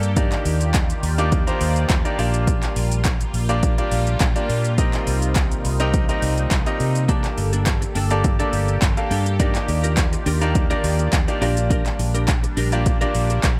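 A straight, driving pulse powers this energetic dance-pop excerpt, built on an overdriven deep house drum kit with a punchy kick, metallic hi-hats, handclaps and shaker sitting up front in the mix. A very quiet, crisp group handclap joins at 0.7 s, close and dry. Beneath it, a dark, round, foam-muted vintage electric bass carries the low end. A brilliant, polished concert grand piano plays short-sustained accompaniment, while a detuned, resonant sawtooth pad with chorus holds slow-attack sustained chords in the background. Both pulse with sidechain pumping, as does the bass. At 7.1 s a clean, picked semi-hollow electric guitar enters with a compressed, hollow-bodied riff thickened by ensemble chorus, over a driving cycle of Ebmaj7, Bb6, Cm7 and Gmadd9, all set in a digital ambience.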